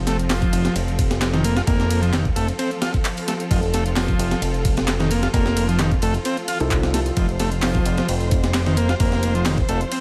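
A swaggering, funky breakbeat cut at 131 BPM, built on a compressed, pitched-up sampler-style kit with a thumpy kick, backed by an overdriven analog drum machine adding handclaps and hi-hat, while a fat, nasal analog bass with tube saturation sits up front over an F7 chord. A buzzy vintage combo organ with light vibrato drives an overdriven riff through digital delay, and a lush bowed string section holds sustained chords with 12-bit sampler grit and sidechain pumping. From 6.6 to 8.4 seconds, a dark, boxy grand piano with audible action noise drops brief stabs in the background, all inside a digital ambience.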